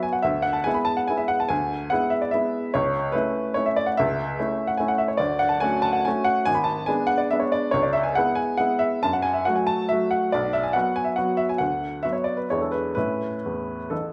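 Classical piano waltz in 3/4 with a graceful, playful mood and a freely pushing and pulling rubato feel. A solo upright piano plays throughout the 14.1 seconds, its woody, intimate tone sitting up front with long sustain and audible action noise. A wet recital-hall reverb surrounds it as the harmony moves through seventh, diminished and minor chords before landing on A at 13.0 seconds in this passage cut from a longer piece.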